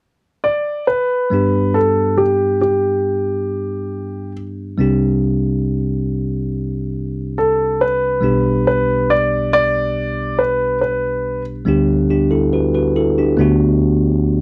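A clear, intimate grand piano carries the melody in this hopeful, emotional pop fragment, entering at 0.4 seconds with a natural tone and audible action noise as it moves between G4 and D5. At 1.3 seconds a bell-like tine electric piano joins with bright, clean accompaniment heard through its built-in speakers, spanning a broad range from B1 up to B4. The tempo is a slow 69 BPM in a straight 4/4, and the harmony in G major moves from G through Csus2 and G/B to G/D before settling on D6. The grand piano drops out at 11.4 seconds, and the electric piano carries on alone to the end. Both instruments sit up front in a dry, close 1970s-style studio sound, touched only by light reverb.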